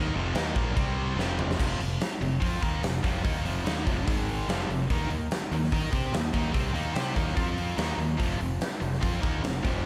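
An aggressive, driving hard rock excerpt in F minor opens with a tight, bright distorted guitar riff, double-tracked and picked up front, alongside a growly, punchy fuzz bass fingered through overdrive. At 145 BPM in a straight 4/4, a big acoustic rock kit joins at 0.3 seconds with a fat snare, tight kick, hi-hat, crash cymbal and toms, set forward in a bright stone room. A drum fill from 1.2 to 1.6 seconds leads into the main section, where the riff moves through power chords on F, Ab and Eb. The guitar ranges from F2 up to Eb5 while the bass holds the low end from F1 to Eb3. A lush hall reverb and a small room ambience give the whole mix a big arena sound before the cut ends near 9.8 seconds.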